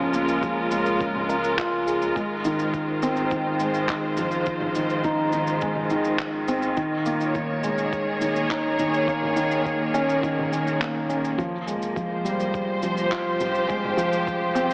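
A straight 4/4 pulse at 104 BPM, set by a muffled, thumpy electronic kick and an overdriven deep house kit of handclaps, shaker and toms, drives this cinematic, melancholic piano-and-strings electronica excerpt, where a soft, felt-muted upright piano with audible action noise plays a delayed riff up front beside a close, bowed string section holding sul tasto chords with vibrato and sidechain pumping, while a round analog bass sits dark in the background, as the harmony moves through Db6, Ab6, Eb7sus4 and Fmadd9 inside an echo-chamber reverb and an AM radio tone.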